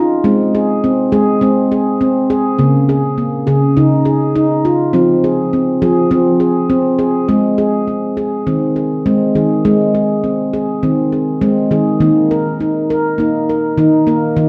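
Meditative and hypnotic, this short world piece, cut from a longer work, features a solo handpan played up front with the fingertips, its ringing nitrided-steel tones bathed in a wet scoring-stage reverb and small-room ambience within a dark production, gently swung in 4/4 as it moves through Ab, Db and F minor before a second passage begins at 7.3 seconds, returning to Ab and settling on Eb.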